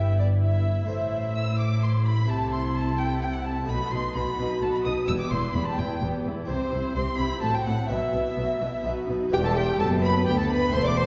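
This stormy, dramatic baroque-style concerto movement opens with the full ensemble sounding together at 128 BPM in a straight 3/4, set in E minor and drawn from a longer piece. A solo violin carries the melody with a rich, smooth, even tone and close vibrato, while a distant, lush violin section also carries the tune in the background and a closer chamber violin section plays a second line with expressive bowing. A brilliant, full-voiced Flemish-style harpsichord with three sets of strings plucks the accompaniment from behind, joined by a rich, smooth, even viola section. Underneath, a distant cello section and an up-front double bass section anchor the bass, the basses especially prominent in the balance. The harmony moves through Am, B7 and a diminished chord before a Bsus4 resolves to B and arrives back on Em at 9.3 seconds, where a new section begins. The whole ensemble sits back in a wet scoring-stage reverb with a dark, rolled-off top end.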